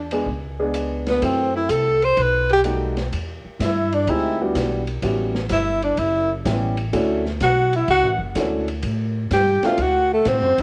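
Small-group swing and bop jazz in E minor, moody and cool, moving at 126 BPM in 4/4 with a firm swing on the eighth notes. A clear, close-miked tenor saxophone carries the melody up front with vibrato, while a subtoned alto saxophone with scooped notes traces a second line further back, its tone softened by cassette tape. An upright piano, woody and up front, comps from 0.1 to 9.8 seconds. Beneath it, a pizzicato upright bass on steel strings gives a thumpy, woody low end, and an open jazz drum kit in a small room adds dark cymbals, a medium-tuned snare, a boomy kick, hi-hat and ride. The harmony moves through F#m7b5 and B7b13 before opening onto Em9, A13 and Dmaj9 in the second section from 3.1 seconds. A moderate spring reverb and the feel of a home cassette recording give this short cut from a longer piece an intimate, late-night character.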